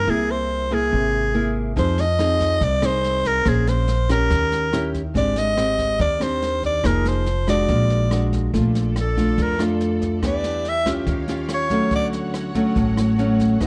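Sunny and romantic, this bossa nova excerpt moves at 142 BPM, with a raspy, growling soprano saxophone carrying the melody up front over fingerpicked nylon-string guitar, complete with finger squeak, and a woody, thumpy pizzicato upright bass. A jazz drum kit played with brushes, with a boomy kick, rim clicks and snare, joins at 1.8 seconds. At 8.5 seconds the saxophone takes a gritty, subtone-tinged solo, and a lush, distant bowed string section adds smooth sustained chords beneath it; the saxophone falls away at 12.1 seconds in a close, dry sound.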